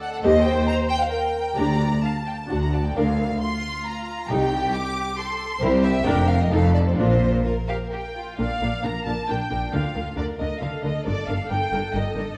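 Restless and dramatic, this quick classical-period movement for string orchestra in Bb major moves at 135 BPM in a rubato 3/4, with a distant, smooth violin melody over a focused, up-front second violin line, expressive violas sliding with portamento, lush cellos and lightly vibrato double basses on the bass, all set in a dark scoring-stage reverb as harmonies pass from Eb through Cm and C7 to Bb before turning toward Gm near 11.1 seconds.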